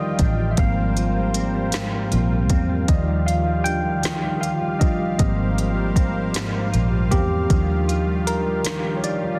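A worn, slightly out-of-tune tine electric piano takes the solo from the first moment, drenched in lush chorus and heard through a combo amp, over a chorused sawtooth pad, a dark, foam-muted fingered bass and a hollow-bodied electric guitar carrying a second line through ensemble chorus and tape echo. In this sultry, late-night slow six-eight R&B excerpt at 52 BPM, an up-front, produced drum kit with a soft kick, woody snare and smooth hats joins at 0.2 seconds and drops out at 9.2, as the harmony sways between Ebmaj9 and Abmaj13. Digital ambience surrounds the parts, and the master is dense and heavily limited.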